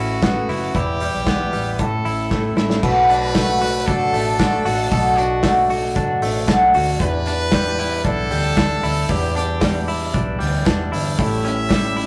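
A brilliant, forceful trumpet carries the melody in this restless, bittersweet stretch of jangly indie pop, sounding distant and roomy with a light vibrato in a pop style. Beneath it, a twangy, compressed clean electric guitar, recorded direct and placed up front, plays arpeggios. A fingerpicked twelve-string acoustic guitar shimmers in the background, octave-doubled and with audible finger squeak, while a dark, round, foam-muted electric bass anchors the low end. A loose acoustic drum kit with a punchy kick, medium-tuned snare, hi-hat and crash enters at 0.2 seconds in a pumping small room, adding a fill at 2.3 seconds, and from 3.1 seconds a crisp group handclap sits barely audible in the mix. The music moves at 115 BPM in 4/4 in B minor, with chords running from Aadd9 through Em and A into a longer Bm7 and Em7 passage that ends on A7. Wet studio reverb and warm saturation give the take a rough rehearsal-room feel.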